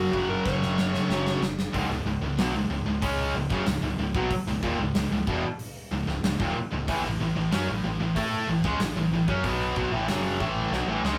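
A dark, smooth overdriven lead guitar opens this heavy, aggressive hard rock excerpt in C# minor, playing a brief melody that ends at 1.4 seconds while three picked, bright guitars drive the riff at 93 BPM: an up-front scooped high-gain one, an overdriven semi-hollow one, and a double-tracked distorted one set in the background. A round, punchy hollow-body bass, fingered, holds the low end, and a big, airy, polished drum kit with a punchy kick and medium-tuned snare sits up front, with fills at 0.5 and 10.7 seconds. The sound is a rough rehearsal-room recording with a moderate small-room reverb, and the chords move from F#5 to C#5 to A5.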